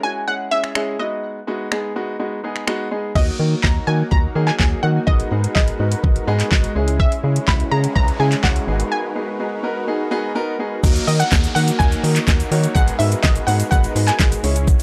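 A warbling, vintage analog pluck melody with chorus and tape echo opens this bittersweet, confident dance-pop excerpt over a clear, sidechain-pumped concert grand piano; an up-front R&B drum kit with a knocking kick, fat snare, metallic hats, finger snaps, handclaps, shaker and crash enters at 0.6 seconds; a hollow, organ-like FM bass and a soft supersaw in the background join at 3.2 seconds; a noise sweep and downlifter arrive at 7.4 seconds; and a grainy, very quiet tube shaker adds a final touch near the end of this dry, gritty recording.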